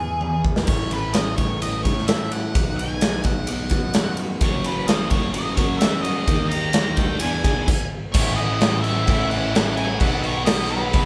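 Quiet-loud alternative rock, anthemic and bittersweet, in which a big, punchy drum kit with bright cymbals launches from a fill at 0.2 seconds under a dark octave-fuzz lead melody and a round, overdriven bass, while a very quiet plugged-in acoustic guitar picks arpeggios with audible finger squeak until a stop at 7.7 seconds. A bright high-gain guitar riff enters in the background at 4.4 seconds, followed by a bright, compressed fuzz guitar riff at 8.1 seconds, all caught as a band playing live in one room with light reverb.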